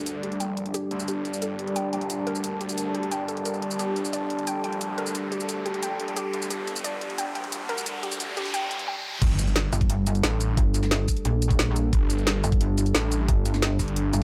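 Driving straight 4/4 at 177 BPM, this futuristic, aggressive excerpt of dark technical drum and bass in G harmonic minor builds over a filter sweep as an overdriven drum kit with woody snare and bright hats, a snarling distorted saw bass, a moody analog pad, a deep ambient pad and a warbling, lo-fi dusty pluck arpeggio gather beneath a riser and noise sweep, until the drop at 9.2 seconds lands on an impact with a knocking electronic kick, joined moments later by a heavy, pulsing pluck wobble bass pushed up front.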